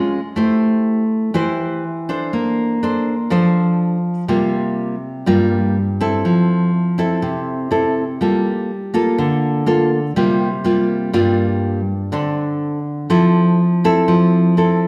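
A straight bossa nova pulse in 4/4 moves along at 122 BPM, giving this short cut from a longer piece a sunny, sophisticated lilt in F major. A single fingerpicked nylon-string guitar carries everything alone from 0.0 to 14.9 seconds, ranging from G2 up to C5. Its tone is full-bodied and deep in a classical way, and it sits up front in the mix. The harmony is rich with extended chords, opening on Am7 and passing through Bbmaj9, C7sus4 and Gm9 before settling on Fmaj7 near 13.1 seconds. A wet recital hall reverb with a 1.3-second decay surrounds the guitar, lending the sound the airy resonance of a church or concert hall.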